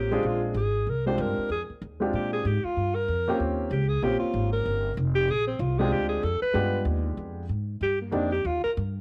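This home cassette recording sits in a moderate studio reverb, with the alto saxophone and baby grand piano carrying a tape-worn character and all three players placed up front. It is a short, playful, relaxed slice of small-group swing and bop, cut from a longer piece, with a lilting swung feel. The breathy alto saxophone takes the solo, its smooth top and vibrato giving the line a relaxed jazz voice until it stops at 8.7 seconds. The baby grand comps underneath with an intimate, natural tone, short sustain and audible action noise, dropping out at 8.3 seconds. A woody, growly pizzicato upright bass on steel strings anchors the bottom through to 9.0 seconds. The harmony circles around Bb13, touching Fm7, Eb13 and G7b9 before landing on Cm7.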